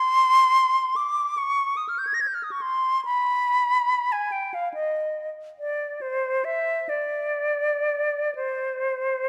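A bright, airy concert flute plays alone in this brief classical excerpt, its soft attacks and expressive vibrato giving the free, rubato line a yearning, lonely character. Close-miked and up front, the flute ranges from C5 to Bb6 over 9.3 seconds, framed by a moderate concert hall reverb.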